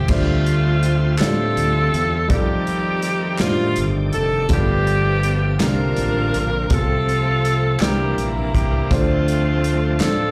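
Uplifting and jubilant, this slow gospel passage sways in 6/8 at 54 BPM, cut from a longer piece and heard as a live gig through a club's PA with a light reverb. A clear, up-front saxophone section carries the melody with jazz-style vibrato, its slapback echo matched on the woody upright piano that accompanies from the background. A bright tonewheel organ holds sustained chords behind them, its shouting, lightly overdriven tone colored by key click, chorus vibrato and a slow rotary speaker. Underneath, a round, up-front fingered electric bass anchors the harmony while an airy, polished country drum kit supplies a punchy kick, medium-tuned snare, hi-hat and crash cymbal. Crisp, compressed group handclaps join at 1.2 seconds, and the chords move from Dm11 through F13, G9, C9sus4, F/C and C9 before settling on Dm7.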